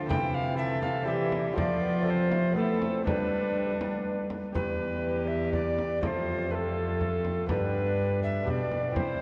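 This festive, courtly renaissance-style consort dance opens with a bowed viola, fingerpicked lute, bassoon and cello sounding together. At 0.1 seconds the alto recorder and frame drum join them. The recorder carries the melody close and up front with an airy, woody straight tone and a crisp chiff on each attack. The dark, gut-strung cello anchors the bass just as prominently. Behind them sit the viola's period-style second line with light vibrato, the mellow bassoon, and the delicate double-strung lute, while the deep frame drum adds compressed, saturated hand strokes. Moving at 122 BPM in a straight 3/4 in G mixolydian, tuned to A4 = 445 Hz, the dance passes through C, F and G before a second phrase from 4.5 seconds turns to Em, F and G, all bathed in a long, wet cathedral reverb with a dark, warm production.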